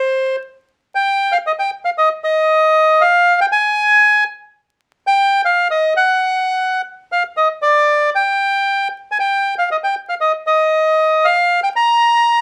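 Nostalgic and playful, this short excerpt of tango cut from a longer piece unfolds with a rubato feel over a 4/4 metre. A solo bandoneon carries the whole passage from the opening moment to 12.4 seconds, its reedy, bright and airy voice placed up front. The line stays in a high register, moving between C5 and Bb5, and the instrument is tuned slightly sharp of standard pitch. Light reverb lends the room a gentle sense of space, while vinyl crackle gives the recording an aged, old-record texture that suits its wistful character.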